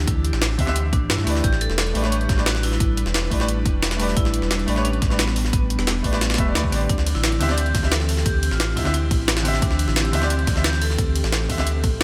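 A deep, sine-toned sub bass with an octave layer sits up front in this rolling, soulful liquid drum and bass cut from a longer piece, moving at 176 BPM in 4/4 over Dsus4, A9sus4 and D9sus4 chords. A punchy, overdriven electronic kick joins two gritty, pitched-up jungle sampler-style kits, one with a medium-tuned snare, ride, rim click and hi-hat, the other a high-tuned snare and hats set back in the background through a high-pass filter. A bright, ringing vibraphone with slow motor vibrato carries the melody through tape echo, while a clear baby grand piano enters at 0.6 seconds with short-sustained accompaniment and an airy, breathy pad holds chorused, sidechain-pumped chords with 12-bit sampler grit, all in light digital reverb with a faint mains hum.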